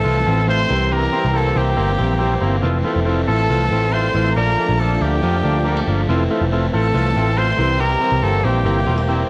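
A clear, punchy trumpet carries the melody up front, its vintage pop-style vibrato giving this bright, breezy indie pop fragment its voice across the full 9.3 seconds. Set at 139 BPM in a straight 4/4 in F major, the music moves through Fmaj7, C7 and Bbmaj7 chords. Behind it, a rich, close studio violin section bows an expressive second line high above, touched with analog delay. A crunchy overdriven guitar and a buzzy combo organ with heavy vibrato fill the accompaniment in the background, while a direct-recorded clean electric guitar adds compressed, picked arpeggios. Anchoring everything below, a round, dark, foam-muted electric bass sits up front. The whole recording carries light reverb and the worn, warbling pitch drift of old cassette tape.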